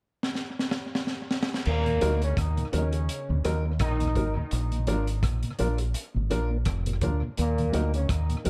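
At a relaxed 84 BPM in 4/4 with a lilting swing on the sixteenths, this serious, hypnotic roots reggae excerpt opens with a crunchy breakbeat drum kit playing a fill from 0.2 seconds over an unaccompanied start, its kick punchy, its snare high-tuned and its cymbals dark, all saturated and gritty with a rolled-off top and a touch of tape echo. At 1.7 seconds the band settles onto Eb minor, led by a deep, round dub bass that sits up front beside the drums, while a mellow trombone section enters with light vibrato and a smooth top, its lines carrying a hint of tape echo. A tonewheel organ glows softly in the background with chorus vibrato and a slow rotary speaker, and from 2.0 seconds a woody, slightly detuned upright piano adds boxy stabs with short sustain. The harmony moves from Eb minor to Bb and back to Eb minor, in an Eb harmonic minor setting. A light reverb wraps the whole.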